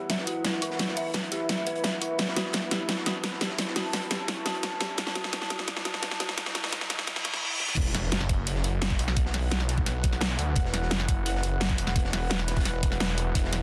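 A dense, heavily limited modern master with light reverb carries this tense, futuristic slice of dark technical drum and bass at 172 BPM in straight 4/4, cut from a longer piece. It opens on a build-up with a filter sweep and drum fill. A deep, moody sawtooth pad with a sub octave, chorus and built-in reverb holds sustained chords, while an eerie, inharmonic FM bell plays detuned, mellow arpeggios through chorus, delay and a low-pass filter, and a very quiet riser leads into a reverse cymbal. Underneath, a knocking, layered electronic kick and an up-front dubstep kit with a huge snare, crash and hi-hat drive the track alongside a faint breakbeat kit that adds gritty, saturated hi-hat and snare from a small room. At 7.8 seconds the drop lands with an impact, and a snarling distorted saw bass enters, aggressive, growling and compressed with a moving notch, carrying sidechain pumping much like the pad.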